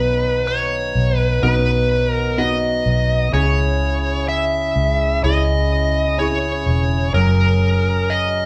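A slow, straight 4/4 pulse at 63 BPM carries this hopeful, heartfelt pop passage in B major, cut from a longer piece and moving from B to C#m at 3.3 seconds and on to F#add9 at 7.1 seconds. Up front, a vintage fingered electric bass with a dark, round, foam-muted tone gives a punchy, amped low end. Equally forward, a smooth, bright, overdriven lead guitar carries the picked melody in a narrow upper register. A percussive tonewheel organ holds sustained chords with a fat, lightly overdriven sound, third harmonic percussion and a stopped rotary speaker. Further back, a clear concert grand piano with deep bass adds natural accompaniment. The band sounds as if playing live in one room, wrapped in a wet, large studio reverb.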